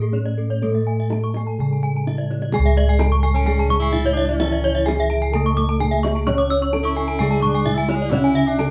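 A live, moderately reverberant room sound frames this brilliant, hypnotic Balinese gamelan excerpt in C# pelog at 129 BPM, where a mellow padded-mallet bronze metallophone melody, a boxy lower metallophone accompaniment and two bright horn-mallet metallophones spinning shimmering arpeggios ring over full, close, up-front bossed gongs carrying the bass and a tight, vintage kendang tucked in the background that plays a fill at 2.2 seconds, before a breathy, subtoned tenor saxophone with light vibrato and scooped notes slips in as a smooth second line at 3.3 seconds.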